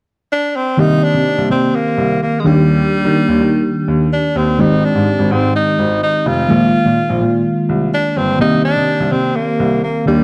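A smooth, up-front tenor saxophone opens at 0.3 s, carrying the melody through a digital delay in this urgent, dramatic 1980s-style pop piece in C minor at 126 BPM. At 0.8 s a round, soft FM electric piano with a chorus effect and a noise layer joins on accompaniment, while a baby grand piano with open, long-sustaining tone holds down the bass as the chords move from Cm7 through Ebmaj7, Abmaj7 and Bb7sus4 back to Cm7. A lush hall reverb and a dark, warm production give this excerpt from a longer piece a spacious sound.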